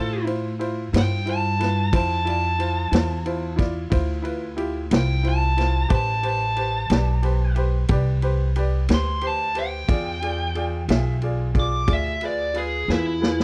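This dry, close recording has a 1970s studio character, with little reverb and every part sitting near. It is a soulful, brooding slow blues in A minor, moving at 60 BPM in a 12/8 metre with a straight feel. A dark, smooth electric guitar carries the melody throughout, its overdriven, picked tone up front as it solos across a range from E4 to D6. A bright upright piano with a brilliant, short-sustained sound accompanies in the middle register, while a woody pizzicato upright bass anchors the low end from A1 to A2. A vintage acoustic drum kit enters at 0.3 seconds with a punchy kick, a medium-tuned snare and dark ride cymbals, and it closes with a fill from 12.9 seconds. The harmony moves from Dm7 to Am7 at 5.9 seconds and then to E7b9 at 9.9 seconds before this portion of a longer piece cuts off.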